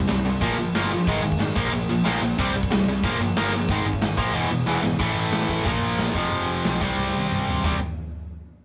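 A straight 4/4 pulse at 182 BPM drives this rebellious, energetic punk rock fragment, where an up-front, bright, double-tracked overdriven electric guitar riff rides over a dark, round picked bass and a punchy, polished acoustic drum kit with bright cymbals, with drum fills at 4.7 and 7.0 seconds and the harmony settling into C major from 5.0 seconds, all captured in a rough rehearsal-room recording with a moderate small-room reverb.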